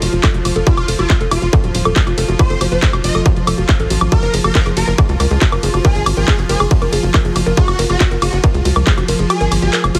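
A tight, punchy sawtooth sequencer bass, a techno kit of handclaps, warm hats, ride and woodblock, a woody wave-folded pluck riff with dub echo, and a bright evolving wavetable pad pumping under sidechain open this intense psychedelic trance excerpt. A distorted, up-front electronic kick arrives at 0.2 seconds to drive it, and a swarming, detuned rave lead with phaser enters at 0.7 seconds, all in a heavily compressed radio-like digital ambience until the kick drops out at 9.3 seconds.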